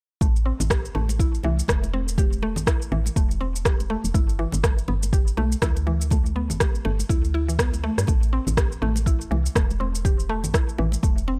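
Dry and gritty, this hardware recording has little reverb, giving a short afro house cut a warm, earthy mood at 122 BPM in A minor, with 58% swing on the sixteenths. A deep electronic kick drum sits up front from 0.2 to 11.1 seconds, while a layered, overdriven electronic shaker and rim click, re-recorded in a small room, adds bite above it. Acoustic congas sit close in the background. Beneath them, a woody FM bass with a soft, round, dark tone and a fast, decaying attack pumps with sidechain compression. Quieter than the bass, a mallet-like FM synth pluck plays bright, percussive arpeggios with a noise layer, shaded by chorus, phaser and tape echo and pumping in the same way, as the chords move from Am to G and back to Am.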